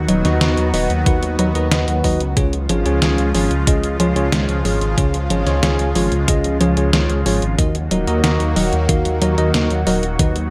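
A deep, rumbling detuned saw bass pumps up front through this moody, nostalgic synthwave excerpt in Eb minor at 92 BPM, under a lush unison pad of sustained chords with chorus, phaser and sidechain pumping, a warbly, dusty lo-fi pluck arpeggiating in the background with chorus and digital delay, bell-like tine electric piano stabs echoed by digital delay, and a tape-colored 8-bit drum machine of hi-hat and snare in gated reverb, joined at 1.1 s by a thumpy electronic kick, all over chords moving from B/D# to Db to Ebm in light digital ambience.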